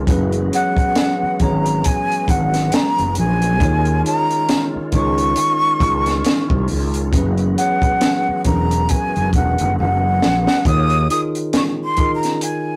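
The tine electric piano, bright tonewheel organ and fretless electric bass open together on a Gb9sus4 chord, setting up a smooth, relaxed neo-soul groove at 68 BPM in 4/4 with a lazy sixteenth-note swing. A compact cocktail drum kit sits dry and up front, with a high-tuned snare, punchy kick and hi-hat. The fretless bass is bright and growly, played direct and amped close in the mix, while the clean electric piano comes through a combo amp and the reedy organ hovers in the background, spun by a fast rotary speaker and chorus vibrato. From 0.5 seconds a breathy jazz flute carries the melody up front, its soft attack, vibrato and lifted highs giving it a slightly unsteady, human quality. The harmony moves between Gb9sus4 and Eb9sus4, and a drum fill from 9.8 seconds leads into a return of the opening section at 10.7 seconds. The organ drops away just before that return, the bass follows shortly after, and the piano, flute and drums carry on. 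The rough rehearsal-room recording has moderate reverb and a saturated glow, and the passage is cut from a longer piece.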